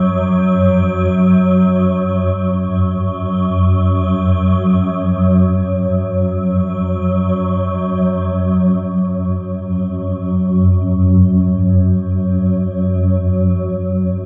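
A swarming, detuned drone sits up front from the first second, its sine and triangle tones wave-folded into a granular, tense mass that moves between F#2 and F#3 in free time, with slow attacks, long sustains and extended releases. Tape echo trails the drone as a huge, wet reverb with an 8.4-second decay turns the space cavernous and ominous. The ambient fragment shifts into a new section at 8.4 s, the drone still evolving alone until it is cut off at 14.3 s.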